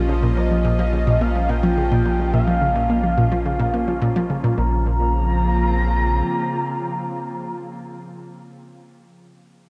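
Drenched in wet spring reverb and heavy echo, this hypnotic, cosmic stretch of ambient, sequencer-driven space music at 107 BPM in Bb dorian sets a deep analog bass and a detuned, chorused analog pluck riff beneath a morphing wavetable pad, while a bubbling, resonant stepped-filter texture sits in the background until 4.6 s and a smooth portamento lead with vibrato sings above as the chords move from Bbm to Bbmadd9.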